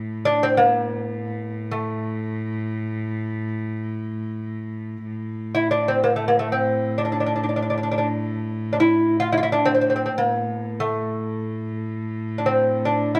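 Longing and soulful, this Persian modal ensemble piece unfolds in free time in A dastgah shur, with tuning set at A4 = 439 Hz. A single bowed cello holds a low drone on A2 from the very start, its sul tasto tone rich, pure and floating, with a soft attack that keeps it gently beneath the melody. At 0.3 s a fingerpicked acoustic lute enters up front, carrying a delicate line between A3 and F4 on double gut strings, some of them doubled at the octave. The lute sits clearly louder than the cello, so its plucked voice leads while the bowed drone hums underneath. A wet recital hall reverb surrounds the pair, lending the short excerpt an open, resonant space that runs until it is cut off at 13.2 s.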